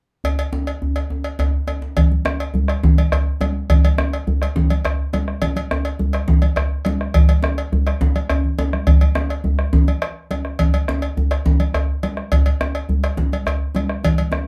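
Driving and powerful, this West African drum ensemble excerpt rolls in a straight 12/8 pulse, opening with cowbell and djembe alone before the bombo and congas join at 2.0 seconds. The metallic cowbell rides quietly on top, while the deep, roomy djembe and the round bombo sit up front, and the congas add a bright, thin-skinned voice played with soft hands. A drum fill breaks through at 8.4 seconds, all heard in a small, reverberant room from a little further back.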